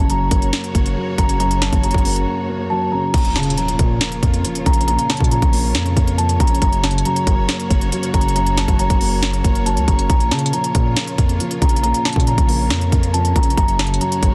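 Built on a half-time trap groove at 138 BPM in Bb minor, this menacing, melancholic hip hop excerpt pairs a bell-like celesta melody soaked in tape echo with a dark, boxy grand piano, lush bowed strings, a deep sine 808 bass and an up-front trap kit of hard-clipped kick, sharp snare and crisp hats, with a brief break at 2.3 seconds before a background impact lands at 3.1 seconds over chords moving between Gb and Bbm in a dense, heavily limited master.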